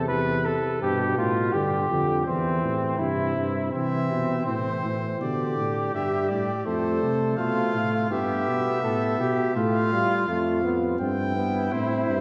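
Stately yet lively, this imitative classical canzona for brass ensemble moves at 83 BPM in a straight 4/4 in F major, taken from a longer piece. A flugelhorn with a warm vibrato carries the second line alongside a punchy trombone accompaniment and a mellow, soft-attacked tuba bass from the start. At 3.7 seconds a clear, close-miked trumpet enters with the melody, all set in a resonant church reverb.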